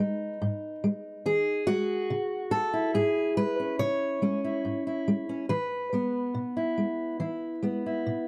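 The rhythm moves in a steady, straight 4/4, unhurried and easy. This brief folk fragment, cut from a longer piece and lasting about 8.3 seconds, features a lone fingerpicked steel-string acoustic guitar carrying everything from start to finish. The mood is nostalgic and warm, with the harmony passing from G#m to C#m at 2.1 seconds and settling on E at 5.5 seconds. The guitar has a warm, auditorium-bodied tone and sits up front, its range spanning from low G#2 to C#5. The sound is dry and close in the manner of a 1970s studio, with just a touch of small-room ambience around the strings.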